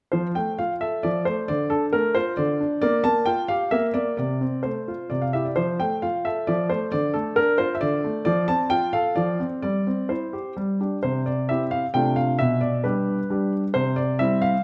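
Set in a recital hall with moderate reverb and given a dark, warm production, this short passage from a longer classical-period sonatina features a solo grand piano, clear and intimate with audible action noise, placed up front in a natural-sounding recording. The elegant, cheerful music unfolds in triple metre with a flexible rubato feel. At 8.3 s the harmony shifts toward a new tonal centre, and a fresh section begins at 11.0 s.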